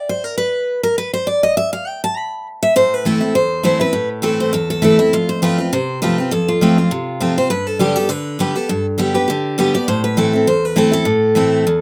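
Swung eighths drive this rustic, lonesome bluegrass excerpt in A minor at 202 BPM, tuned to A4 = 437 Hz, where a bright, full-bodied picked dreadnought guitar plays accompaniment alone until a second up-front picked guitar with fresh strings enters with the melody at 2.6 seconds over Am, F and G chords, all set in a small room with modest reverb and a rough home-demo mix.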